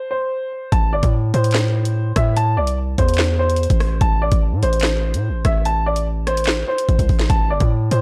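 Tense and dark, this half-time drill excerpt opens with a clear, woody upright piano alone, its long-sustaining, filtered melody ringing in the upper register before the distorted 808-style bass and the electronic drill kit drop in at 0.7 seconds over an A minor chord. The bass is heavy and aggressive with a noisy edge, a fast attack and a decaying body, while the kit pairs a knocking kick, sharp snare, bright hats, handclaps and rim clicks, re-recorded in a large room, with a drum fill at 6.9 seconds. The whole excerpt carries a dry, gritty hardware character with transformer saturation and cassette tape colour.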